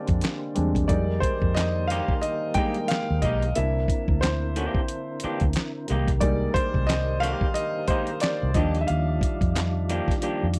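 Smooth and sultry, this neo-soul R&B passage sits at 90 BPM in 4/4 with a lazy 16th-note swing, as an intimate grand piano, full of audible action noise and deep bass, carries a solo over chords moving from Bb13 through Fm11, C9 and Cm11 to Ebmaj9. Up front, a gritty, compressed sampler-style kit with a thumpy kick, fat snare, hi-hat and handclaps pairs with a dark, round, foam-muted electric bass, while a mellow tonewheel organ with percussive attack and a slow rotary speaker holds sustained chords in the background. From 1.6 s a slightly broken-up, lo-fi electric guitar through a small old amp adds a picked second line, all captured in a dry, close 1970s-style studio sound.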